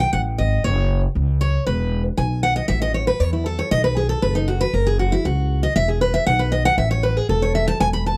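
Bluegrass in a lively, rustic mood, this brief excerpt runs in a straight 4/4 at a brisk clip and is cut from a longer piece. A picked steel-string acoustic guitar carries the whole stretch, playing an up-front solo from 0.0 to 8.2 seconds across a fairly high register, its jumbo body giving a bright, full-bodied ring. Beneath it, an upright bass plays pizzicato on gut strings, low and thumpy with a woody character, sitting just as close in the mix. The harmony moves through B, F#5, E, A5 and B5 before circling back through F#5, E and B to land on A5 as the opening section repeats at 6.8 seconds. The sound is dry and close, with little reverb, in the manner of a 1970s studio recording.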